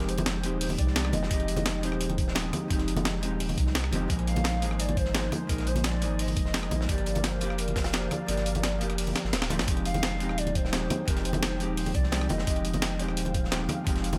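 Over a straight 4/4 at 172 BPM, a gritty, tape-warm sampled breakbeat of hi-hat, rim click and snare sits beside a second, darker and saturated acoustic break pushed into the background, while a thumpy compressed electronic kick enters at 0.8 seconds and congas struck with hard hands ring close and dry from 0.2 seconds. This short excerpt of dreamy, lush liquid drum and bass in F dorian moves through Fm9, Bb7sus4 and Gm7 before returning to Fm9 at 9.7 seconds. A round sine sub bass sits up front, deep and mellow, beneath a soft-attack, detuned sawtooth pad with chorus that holds long chords in the background. A dark, clean hollow-body electric jazz guitar picks accompaniment through delay, and above it a hollow, woody clarinet-like synth lead with vibrato carries the melody, bathed in lush chorus and delay. The kick drops out for a moment while a drum fill leads back into the progression, and light reverb ties the parts together.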